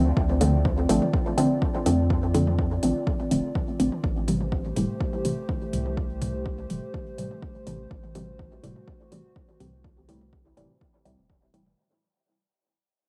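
Dub techno in a meditative, hypnotic mood, this fading fragment of a longer piece sets a muted, detuned sawtooth chord stab up front, with chorus, phaser and dub echo under a filter sweep, over a dark, wave-folded analog pad and a round, soft sub bass, all sidechain-pumped and moving from Dm7 to Am7, joined by a punchy, overdriven kick, metallic overdriven hi-hats and very quiet electronic toms and congas, in a moderate spring reverb with a cassette home-recording character.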